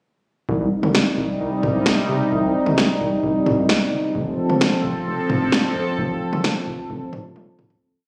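Nocturnal and cool, this short synth-pop piece in C dorian moves at 131 BPM in a straight 4/4, with a bright, detuned sawtooth pad with chorus holding sustained chords up front over a round, dark sequenced analog bass and an electro drum machine with a deep kick, punchy snare and syncopated toms, all set in a wet hall reverb with a phone-in-the-room character, shifting from Cm to F at 4.2 seconds before a fade-out from 6.0 seconds and a closing drum fill at 7.4 seconds.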